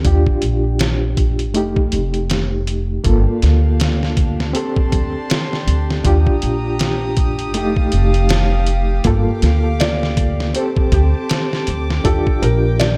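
Trip hop with a brooding, smoky mood, built on a compressed, pitched-down sampler drum kit with a thumpy kick, a woody pizzicato upright bass up front, and an overdriven, reedy electric piano carrying tremolo and tape echo, while a bowed violin section with light vibrato enters on sustained chords at 3.0 seconds and a soft, felt-muted upright piano with audible action noise takes the melody at 9.8 seconds in this excerpt from a longer piece.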